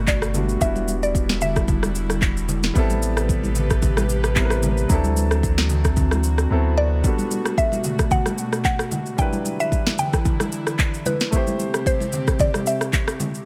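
A mallet-like synth pluck with a woody, round FM tone carries the melody, colored by chorus, phaser and delay, sounding briefly at the start and returning from 6.8 seconds in this soulful, relaxed amapiano clip cut from a longer piece. Beneath it an up-front electronic afro-pop kit with a deep kick, sharp snare, handclaps, rim click and shaker drives a lightly swung 4/4 groove, joined by ringing, vintage congas in the background and a punchy sine sub bass with a pitch-drop attack that drops out at 7.0 seconds after a brief silent gap. A clear baby grand piano with long sustain and an airy, breathy, warbling pad with sidechain pumping hold jazzy ninth and seventh chords throughout, all set in light reverb.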